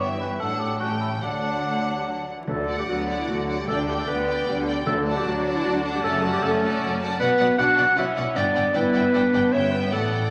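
A quick classical-period movement for symphony orchestra in D major, this lively, graceful excerpt moves at 152 BPM in 3/4 with a rubato feel, cut from a longer piece. A rich, focused chamber violin section carries the melody with vibrato. A clear, intense second violin section and a distant, roomy clarinet weave second lines beneath it. In the opening 2.3 seconds, an airy flute ensemble with crisp attack, a vintage-toned cor anglais and a very quiet, soft-attacked bassoon add brief colour. A smooth viola section sits in the background, over an expressive double bass section and a distant cello section. From 2.5 seconds a mellow French horn section holds sustained chords, and very quiet timpani with hard mallets sound close and dry until 5.4 seconds, all set in a wet recital hall with vinyl crackle.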